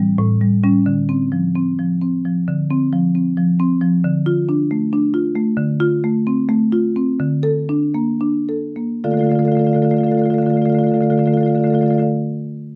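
Close, detailed microphones and light reverb put a solo marimba up front, its padauk bars struck with medium mallets for a woody, dark and smooth tone ranging from A2 to F5. This reflective, flowing contemporary classical piece in D minor moves in a rubato 7/8 at roughly 208-275 BPM counted in eighths, and its harmony circles around D, from an opening A7 through Dm7, F/D and Bbmaj7/D. The tempo slows between 4.8 and 9.0 seconds before settling on a plain D minor chord, and the marimba stops at 12.1 seconds in this passage cut from a longer work.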